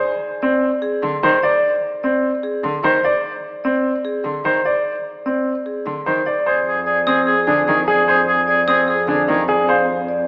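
A marimba struck with medium hard mallets carries the melody over intimate baby grand piano arpeggios, where the piano's action noise and long sustain sit up front in this hypnotic, meditative passage of minimalist pattern music, cut from a longer piece. A single rich, bowed cello with vibrato joins at 1.0 seconds as smooth accompaniment. At 6.5 seconds, as the harmony settles on Fm7, a clear classical-style solo oboe enters with a prominent second line and a warm bowed double bass holds the bass. At 7.1 seconds a woody, sharp xylophone adds bright arpeggios in the background, all steeped in heavy scoring-stage reverb and a lo-fi AM radio tone.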